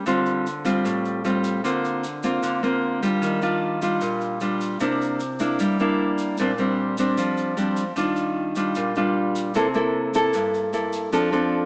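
A straight 4/4 pulse at 152 BPM carries this sunny, romantic bossa nova fragment, cut from a longer piece and tuned slightly sharp to A4 = 441 Hz. Up front, a full-bodied, fingerpicked classical nylon-string guitar moves through rich chords such as Dm7, Ebmaj9, C9 and Bb69 before settling on F6 at 11.1 seconds, while a grainy, bright, vintage, band-limited tube shaker sits well in the background. The whole recording has a lush plate reverb and an AM-radio character.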